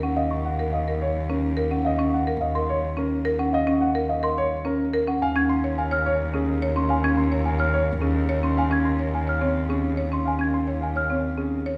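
A buzzing marimba struck with hard mallets plays arpeggios in this meditative, hypnotic minimalist classical pattern music in 3/4, its woody, dark lines sounding beneath the delicate, bell-like arpeggios of a small celesta. A bowed cello holds a low Eb2 with light vibrato and an airy, intimate sul tasto tone, while a concert grand piano with deep bass and short sustain carries the melody from 0.2 s, as the harmony moves from Ebm9 to Db/Eb at 5.2 s. A wet recital hall reverb places the listener further back in the room in this passage cut from a longer piece.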